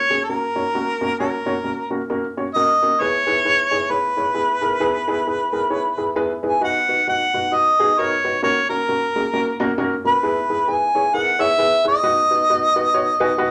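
A warm harmonica leads this urgent, driving soul excerpt, its pop-style solo line sung with vibrato, scooped notes and a smooth top, sitting up front over a swung pulse. A dark, mellow upright piano with a woody, short-sustained touch accompanies it as the harmony moves through F#, E and B, adding a brief fill at 12.9 seconds. A wet club reverb gives the pair a lively room around them.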